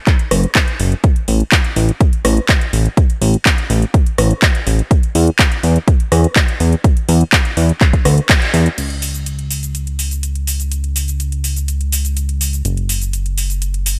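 A steady, straight 4/4 pulse at 124 BPM drives this hopeful, uplifting progressive house excerpt, with a punchy, overdriven electronic kick up front until 8.4 seconds, just after a full-band accent at 8.3 seconds. A layered house kit of metallic hats, handclaps, rim clicks, shaker and crash, also overdriven and caught in a large room, pumps against the sidechain throughout. Underneath, a fat, detuned analog bass of sawtooth, square and triangle tones, touched with ring modulation and a filter sweep, sustains mellow low notes with the same pumping from 0.3 seconds, carrying on into the second section at 8.8 seconds, all in a dry mix.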